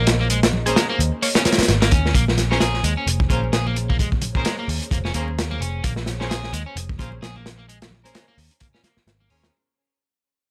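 A crunchy, punchy breakbeat kit swings its 16ths at 130 BPM in Bb minor, driving a gritty, funky breaks excerpt where a round, foam-muted picked bass sits up front, a slightly broken-up guitar riff carries vintage 12-bit sampler grit, very quiet congas and a deep, wave-folded analog pad fill in beneath, a woody FM mallet pluck with chorus and analog delay flickers briefly at the start while bowed, vibrato-rich strings enter at 0.7 seconds with filtered, delayed stabs, all in a dry, saturated hardware sound that begins fading out at 2.1 seconds.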